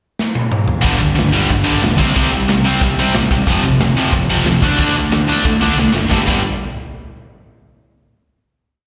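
Energetic and rowdy, this short punk rock piece tears along at 183 BPM in a straight 4/4, opening with a drum fill from the big acoustic rock kit at 0.2 seconds, with its punchy kick, medium-tuned snare, toms and bright cymbals driving a fast punk groove. At 0.8 seconds a tight, double-tracked distorted guitar takes up palm-muted eighth notes with a slapback echo, while a fuzzy, overdriven picked electric bass pushes driving eighth notes beneath it through G5, C5, F5 and D5. Another drum fill leads to a final G5 chord at 6.1 seconds, all heard as a live gig through the venue's PA in a small-room ambience with recital hall reverb.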